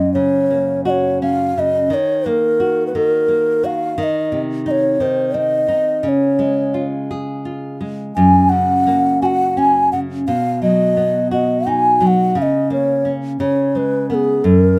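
An unhurried 6/8 pulse at 58 dotted-quarter beats per minute, played rubato, carries this innocent, tender children's lullaby in F# major. A hollow bass bansuri sings the melody for the full 14.8 seconds, its airy bamboo tone shaped by vibrato and tongued notes, close-miked and up front. Beneath it a nylon-string guitar supplies fingerpicked accompaniment throughout, full-bodied with a deep classical character and the occasional finger squeak, also placed up front. The harmony moves from F# through D#m, Cm and C# back to F# and B, then settles on A#madd11/C# and finally a C#5 at 13.4 seconds. Light reverb surrounds the pair, and the passage is cut from a longer piece.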